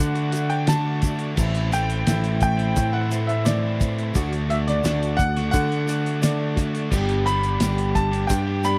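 Reflective and dusty, this folk rock and heartland rock excerpt moves at 87 BPM in a straight 4/4, with a bright baby grand piano carrying the melody over chords of D, Am and G, its action noise audible and its notes ringing long. A picked plugged-in parlour acoustic guitar sits in the background, a double-tracked overdriven electric guitar plays a riff, a round, punchy electric bass stands up front, and a very quiet tonewheel organ holds sustained chords through a slow rotary speaker with key click. The cloth-damped drum kit enters at 0.2 seconds with a muffled, gritty sound, fat snare and dark cymbals, joined at 0.3 seconds by a grainy tube shaker, all captured in a dry, close 1970s-style studio recording.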